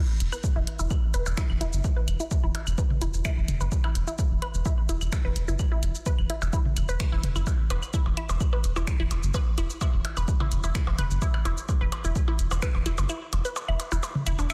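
A saturated sub bass and a garage-style drum kit of finger snaps, hi-hat and shaker open this minimal techno passage at 0.2 s, cut from a longer track, with a punchy electronic kick arriving up front at 0.4 s in a straight 4/4 metre. The deep, thick sub bass sits prominently in the mix and pumps against the sidechain, while the layered, tape-warm kit carries a small-room ambience and a soft clipping on the snare. A resonant blip pluck threads a riff through the upper register: a juicy, squelchy sawtooth tone with detuned edges, a noise layer and a sub octave, shaped by a quick filter pluck and moving notch, then coloured by phaser, delay and the same sidechain pumping. Electronic claves, percussion blips and toms play alongside it, echoing through delay and a small-room ambience. The mood is cool and clinical, the master dense and heavily limited, and the kick drops away at 12.7 s, leaving the bass, pluck, kit and percussion to carry the final moments.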